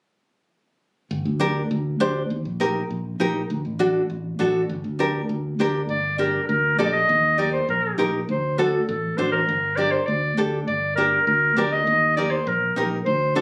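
This driving, danceable cumbia excerpt opens at 1.1 seconds with a fingered electric bass, punchy and direct, soon joined at 1.4 seconds by a full-bodied, fingerpicked nylon-string guitar set up front in the mix. Moving at 201 BPM in a straight 4/4 feel in G harmonic minor, the opening passage circles through Gm, Eb and D chords. At 5.9 seconds a clarinet takes the melody, vintage in tone and played in a classical style as an up-front solo line. Beneath it the harmony moves through Eb, D7 and back to Gm before settling on Eb. The sound carries the character of a phone recording made in the room, with club reverb, compression and a touch of light reverb, and the passage is cut from a longer piece.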